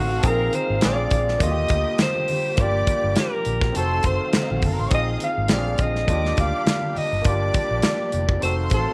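This is a lush 1970s-style soul excerpt with a smooth, cinematic mood, moving at 103 BPM in 4/4 with a light sixteenth-note swing. A breathy alto saxophone carries the melody up front in a vintage jazz style, its subtone voice sitting over a rich, focused string section that plays a close second line with vibrato. A barky tine electric piano, clean through a combo amp, supplies the accompaniment, while a second string section, con sordino and veiled, holds soft-attack sustained chords far in the background. Underneath, a dark, round, foam-muted fingered electric bass anchors the low end, and a modern acoustic drum kit enters at 0.2 seconds with a tight kick, medium-tuned snare and hi-hat placed up front in a small room. Low-tuned, thick-skinned congas join at 0.5 seconds, very quiet and distant, as the harmony cycles twice through a progression from Bb9sus4 and Bb7 to Ebmaj7, Gm7 and F7b9 under light reverb and studio ambience.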